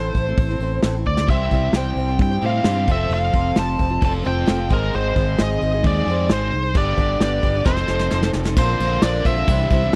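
A jangly, nostalgic slice of folk rock and heartland rock in a straight 4/4, cut from a longer piece. A biting, overdriven lead guitar carries the melody up front over a shimmering, octave-doubled twelve-string acoustic and a fingered electric bass, while a soft brush drum kit with a punchy kick adds fills at 1.1 seconds and from 7.7 to 8.6 seconds. A crunchy, double-tracked overdriven guitar riff with spring reverb enters at 1.3 seconds, and the chords move from Am through C, F, Ab, G and F7 to a Bbadd9, all captured in a dry, close 1970s-style studio sound with small room ambience.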